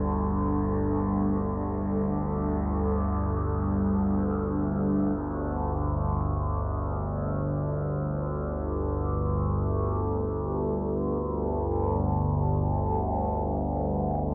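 A cavernous dark ambient drone opens at once, with a resonant, up-front sawtooth drone of moving overtones, coloured by chorus and phaser, sitting low beneath a deep, warbling, vintage-toned pad that holds sustained chords through slow attacks and long releases, all bathed in a huge, wet reverb in this brief fragment of a longer piece.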